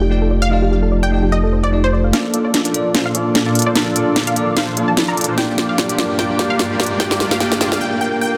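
Future bass in a playful, bright mood with a half-time, lightly swung feel, this excerpt opens on a bell-like tine electric piano with tape echo, a shimmering, ethereal pad, a soft round pluck arpeggio under a filter sweep and a fat analog bass with tube saturation, while a punchy unison pluck melody with phaser and delay enters at 0.4 s. At 2.1 s the arpeggio and bass stop as a bold, nasal polysynth riff and a crisp, sharp trap kit of hi-hat and snare come in for the build-up, with filter sweeps on the polysynth and pad, a drum fill and, from 4.1 s, a very quiet riser underneath. The chords move from F13 to Bbmaj7 and Gm7 inside a lush hall reverb and a dense, heavily limited master, ending on a swell from 7.8 s.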